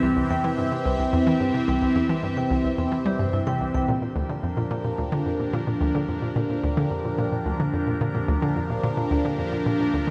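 A swirling, up-front phased analog pad holds sustained chords through this cosmic, hypnotic fragment of sequencer-driven ambient space music, its detuned sawtooth tone colored by phaser, chorus, tremolo and shimmer reverb. Beneath it a hollow, bouncy square-wave pluck repeats a low riff with chorus and analog delay, while a ringing, metallic vibraphone plays arpeggios until 3.8 s, and the harmony moves from C to Bb6 at 3.9 s. From 6.3 s a very quiet, breathy wind-like noise texture drifts in high above, all set in a wet, spacious reverb.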